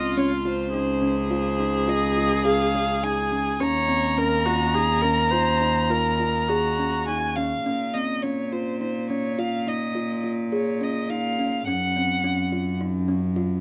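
A bowed solo violin carries the melody up front, its smooth, even tone shaded with vibrato, in this pensive, hypnotic piece of contemporary chamber music cut from a longer work. It moves at 105 BPM in an uneven 7/4 with a straight feel, in Bb minor, tuned to A4 = 439 Hz. Beneath it, a rich, intimate viola plays a second line with light vibrato, an airy sul tasto bow and a soft attack, until it drops out at 7.4 s. A kalimba adds mellow, woody arpeggios with short fingertip plucks, while a single cello holds the bass with a pure, floating, sul tasto tone that feels slightly distant. The harmony moves from Dbmaj9 to Ebm9 before the repeated opening section returns at 7.7 s on Bbm and closes on Gb5, captured by close, detailed microphones in a light reverb.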